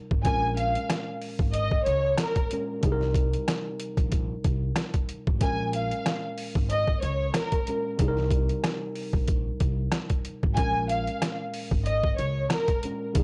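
Boom-bap hip-hop at 93 BPM in Bb dorian with a light 16th-note swing, this gritty, dark cut sets a lush, bowed violin section with smooth vibrato and tape echo up front over a worn, slightly out-of-tune tine electric piano with a cassette tint, a woody pizzicato upright bass with transformer saturation, and a thumpy, pitched-down sampler-style trip hop kit of kick, snare, rim click and hi-hat, all circling Bbm7 and Cm7 in a dry small room with a gritty hardware feel.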